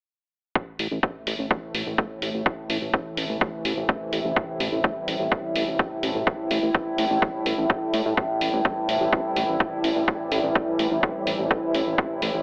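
Melodic techno with a dark, cinematic mood, cut from a longer piece and held on a single A minor chord throughout. A punchy, up-front electronic kick arrives together with a fat, detuned sawtooth bass at 0.6 seconds, and tape-warm hi-hats follow at 0.8 seconds, the bass carrying a filter sweep across its full length while sidechain pumping breathes through it and the hats. An evolving wavetable pad enters at 1.3 seconds with slow-attack sustained chords that morph and warble, its vintage, full-bodied tone thickened by chorus and its own reverb. Beneath it sits a resonant drone on a single low note, its moving overtones shaded by phaser and chorus and kept in the background. The whole mix is placed in a lush hall yet squeezed into a heavily compressed, telephone-like radio sound that gives it a boxed-in, distant character.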